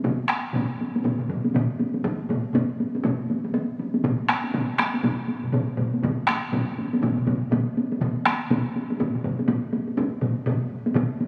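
Japanese traditional taiko drum ensemble music, ceremonial and driving, in a swung 4/4 that speeds up across this brief 11-second excerpt cut from a longer piece. Four taiko ensemble parts play throughout: two up front in a small-room sound, one with hard sticks and one with heavy sticks, while two sit in the background, a close, dry heavy-stick part and a close hard-stick part. The phone recording made in the room carries a wet concert-hall reverb that gives the drums a 2.2-second tail.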